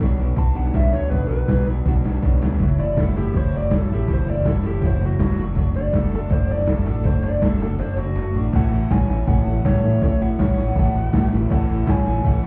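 Wistful yet upbeat, this 162 BPM indie rock cut in A major has a gated 80s digital drum machine with a thumpy kick and gated-reverb snare alongside a growling, overdriven fingered bass up front, while a bright, twangy twelve-string electric guitar and an overdriven electric guitar with lush chorus play riffs in the background; a dark, smooth lead guitar with plate reverb and analog delay takes a solo from 0.4 seconds, a hollow group handclap sits very quietly from 3.0 seconds, and the whole mix sounds muffled, as if heard through a wall in a club.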